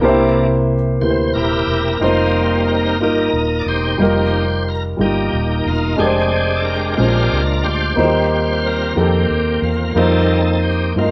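A live-in-one-room band sound with moderate studio reverb opens this slow gospel excerpt, cut from a longer piece and moving at 60 BPM in a straight 6/8 feel. The mood is reverent and uplifting, carried by a bright, shouting tonewheel organ that takes the solo across the full 11.1 seconds, lightly overdriven through a slow rotary speaker with chorus vibrato and audible key click. Beneath it, a dark, mellow grand piano sits up front in accompaniment, ranging from Bb2 to Eb5. A round, amped hollow-body short-scale electric bass, played with the fingers, anchors the low end down to Eb1. The harmony travels from C7 through suspended F chords and Fm69 to Bb13, settling on Eb6 at 8.0 seconds.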